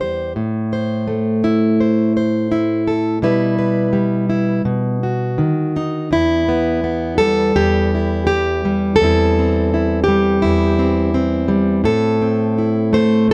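At a steady 84 BPM in a straight 4/4, this short folk excerpt in E minor is cut from a longer piece and carries an intimate, wistful mood. A single fingerpicked steel-string acoustic guitar, plugged in and sitting up front, plays alone for the full 13.3 seconds, ranging from E2 up to C5. Its jumbo body gives a warm, full-bodied tone, and it is strung with fresh strings. The harmony moves from Am through Em/B to B in the opening phrase, then shifts at 6.1 seconds to Em, C/E and back to Am. A moderate studio reverb gives the guitar a modest sense of space while keeping it close and personal.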